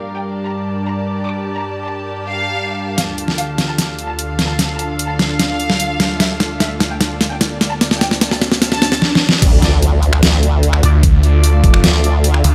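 The formant-sweep wobble bass dominates the drop at 9.4 seconds, joined at 10.8 seconds by a snarling, distorted saw bass, both growling up front over a knocking electronic kick and an overdriven dubstep kit with deep snare and bright hats in this aggressive, menacing half-time wobble dubstep excerpt at 149 BPM in D minor. Before that, a symphonic violin section carries the melody with vibrato over a lush, airy unison pad and a veiled, con sordino chamber string section, both pumping against the sidechain, while the drums enter at 3.0 seconds with a fill through the build-up and a very quiet riser, swell and impact rise beneath. Vintage-toned brass stabs with digital delay punctuate the drop, all set in light reverb and digital ambience.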